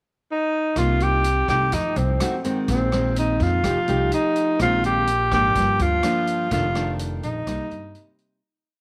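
A straight 4/4 bossa nova groove settles in at 0.8 seconds, after a breathy tenor saxophone opens the pickup bar alone at 0.3 seconds. The open jazz drum kit keeps a soft bossa pattern of hi-hat, rim click and a boomy kick in a natural studio room. Beneath it, the upright bass plays woody, growly pizzicato in a dotted root-and-fifth figure, while the nylon-string guitar, fingerpicked and dark in tone, pairs thumb bass notes with syncopated plucked chords moving through Cm7, F7b9, Bb9sus4 and F9. Up front, the saxophone spins short, hook-like motifs in a mellow subtone with a soft attack, its whispered sound carrying a roomy, distant air under light reverb. The smooth, intimate piece fades out from 6.5 seconds, settling back on Cm7.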